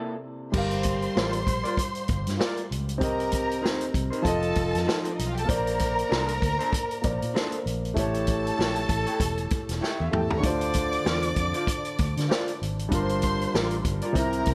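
A brief break at 0.0 s opens with a long-sustained, up-front grand piano and a twangy, slightly broken-up picked electric guitar riff through a small old amp before lush, vibrato-rich bowed strings, a dark, round foam-muted fingered bass and a punchy, rolled-off vintage drum kit with dark cymbals enter at 0.5 s. Together they form a romantic 1970s-style soul groove at 97 BPM with a lightly swung feel over chords such as Gm7, Bbmaj9 and A7, a drum fill at 9.8 s, and a gentle studio reverb on this warm fragment of a longer piece.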